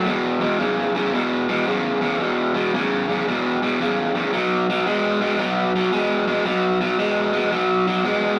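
Laid-back and gritty, this short blues cut from a longer piece has a swung 4/4 feel carried entirely by a raw electric garage guitar. Picked, bright and overdriven, the guitar sits up front on its own for the full 8.4 seconds, moving from an E5 chord to a B5 at 4.3 seconds. A moderate studio reverb and a layer of vinyl crackle surround it.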